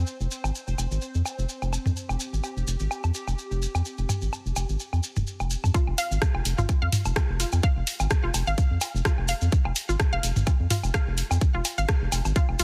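Minimal techno at 127 BPM in F minor, sparse and quirky, opening with a round, deep analog bass pumping under a pulsing, detuned gated texture with chorus and reverb, while grainy maracas and tape-echoed electronic woodblock and toms enter over a swung sixteenth feel. At 5.7 seconds the drop arrives as the texture drops out: a tight, up-front electronic kick lands alongside a squelchy, resonant blip pluck riff with chorus and tape echo, and at 6.0 seconds an overdriven analog drum machine adds hi-hat and rim click. The mix is dry, dense and heavily limited, and the clip is cut from a longer piece.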